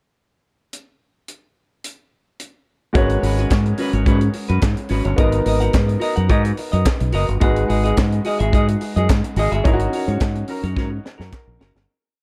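Dark small-room production frames this driving, glamorous disco piece, where a tight funk drum kit with a high-tuned snare starts alone at 0.7 seconds with a four-on-the-floor beat and open off-beat hats, before a clean semi-hollow electric guitar enters playing choppy sixteenth notes alongside a clear baby grand piano with audible action noise that holds spread chords and adds grace notes, then a growly, punchy fingered electric bass joins with a syncopated line full of chromatic approach notes, and crisp group handclaps sit in the background on the backbeat, with the music fading from 9.7 seconds under closing drum and piano fills.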